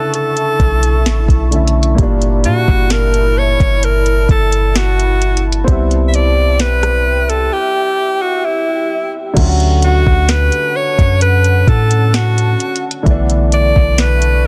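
Contemporary R&B with a dreamy, tender mood, moving at a slow, unhurried pace in this short cut from a longer piece. An edgy, forceful alto saxophone carries the melody up front with vibrato and a punchy pop-style tone, trailed by a digital delay. Beneath it, a dark baby grand piano plays mellow, intimate accompaniment, its action noise audible, while a deep, moody ambient pad with chorus and built-in reverb holds slow-attack, sustained chords in the background. A smooth, produced electronic drum kit sits up front with a soft kick, sharp snare, crisp hats, rim clicks and crash cymbal, and a round, sine-like 808-style bass enters at 0.6 s with fast-attack, decaying notes. The harmony drifts through lush seventh and extended chords, a break arrives at 7.5 s, and the opening section returns at 9.4 s. The mix is dry, dense and heavily limited in a modern style.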